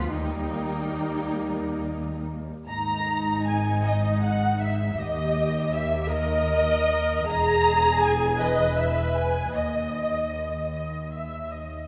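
Muted strings open together, a veiled, con sordino string orchestra playing a slow, elegiac movement in G# minor and 6/8, moving at roughly 46-55 dotted-quarter beats per minute with a flexible, rubato feel. Up front, the first violin section carries the melody high in its range with a soft attack and a smooth top, while a second violin line sits in the background, lush and dark beneath it. Violas fill in the accompaniment with vibrato and a lush, dark tone, and the cellos and a distant double bass section hold the low bass with only light vibrato. Heard as a short cut from a longer piece, the passage moves from a brief opening section into a second one at 2.7 s, with harmonies shifting from D# to E before the violins stop at 10.7 s and the lower strings end shortly after. A generous concert hall reverb surrounds the ensemble, lending the melancholic mood a soft, distant glow.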